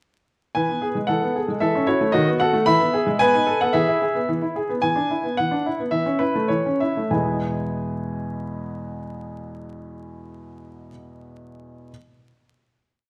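Playful and cheerful, this complete classical-period sonatina in E major for solo baby grand piano moves in a straight 2/4 at 93-116 BPM. Its clear, intimate tone and audible action noise sit up front with long sustain across a range of E2 to B5, as a single-line melody and tune in sixths ride over a broken-chord bass. The piece slows from 4.3 seconds into a brief coda before settling on a final E chord at 7.1 seconds, all within a moderate recital hall reverb flecked with vinyl crackle.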